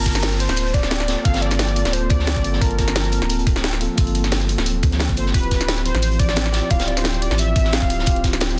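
A rolling, lightly swung 176 BPM groove of knocking electronic kick, an up-front drum and bass kit with cracking snare, hi-hat and tambourine, and a gritty, saturated breakbeat kit tucked behind drives this dreamy liquid drum and bass excerpt in G minor, where a round sine sub bass anchors the low end, a mellow tine electric piano with dub echo plays over Gm11 and then Dm11 from 5.3 seconds, an ethereal detuned pad with ensemble chorus glows in the background, a velvety sawtooth lead with vibrato, chorus and tape echo carries the melody, and a very quiet downlifter sounds until 2.6 seconds under a dense, heavily limited master.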